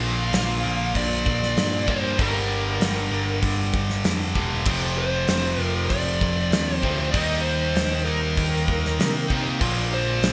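Hard rock at 97 BPM in G minor, this menacing, heavy excerpt cut from a longer piece moves through Bb, Gm, F and Eb, with a dark, smooth overdriven lead guitar carrying the melody over a stack of riffing guitars: a bright distorted electric in the background, a high-gain distorted guitar, and a double-tracked overdriven semi-hollow guitar. A growly, punchy overdriven picked bass anchors the low end, and a gated 1980s drum kit enters at 0.3 seconds, up front with a punchy kick, medium-tuned snare, hi-hat and bright crash cymbals in an airy gated room. The production is bright in a 1980s digital style, with light small-room reverb.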